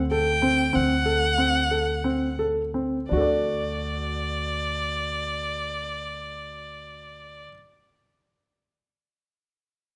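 A woody, growly pizzicato upright bass holding a low D opens this restless, playful fragment of contemporary chamber music in 7/8, joined almost at once by an intimate concert grand piano's arpeggios, with audible action noise, and by a single bowed violin carrying the melody up front with focused, boxy vibrato. Set in D mixolydian at 163-198 BPM counted in eighths, the trio slows over the first 3.1 seconds on a D7 chord before settling onto D for the second section. A wet recital hall reverb surrounds the parts until the bass and piano stop at 7.5 seconds.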